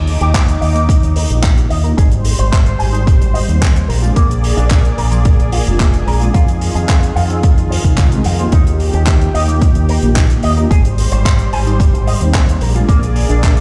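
A punchy, overdriven electronic kick sits up front in this sunny, groovy nu-disco excerpt, layered over a dry, damped 70s drum kit with handclaps and hi-hat. Beside it, a fingered electric bass runs through an envelope filter, direct and up front, while a bright, twangy electric guitar picks a clean, scooped riff through its own envelope filter, lush chorus, low-pass filter and tape echo, with a filter sweep running across it. Underneath, a thick, warbling unison pad of detuned sawtooth voices holds sustained chords with a slow attack, long release, chorus and sidechain pumping. From 1.3 seconds a mellow, round synth brass adds background accompaniment, dark and brassy with vibrato, chorus and tape echo. The harmony moves through Ebmaj7, Abmaj7, Bb7 and Fm7 before circling back, and the mix sounds like it was played on a big sound system in a bare room.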